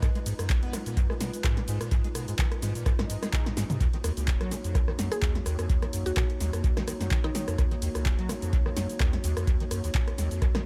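Acid house at 127 BPM in Eb minor, driving and trippy, with a light swing on the sixteenths and an echo-heavy digital ambience. A squelchy, resonant square-wave acid bass riff drives the groove with filter sweeps, tube saturation, ensemble chorus, analog delay and sidechain pumping. A deep, tape-warm electronic kick sits up front, while a punchy analog drum machine, re-recorded in a small room and treated with dub echo, supplies handclaps, hi-hat, ride, rim click, shaker, snare and toms. A moody, detuned pad holds sustained chords, moving from Abm to Ebm7 at 3.8 seconds, with subtle chorus and sidechain pumping. A faint electronic swell and a drum fill lead into that change, and from 5.1 seconds a woody, round FM pluck with chorus and dub echo adds a brief melody in the background.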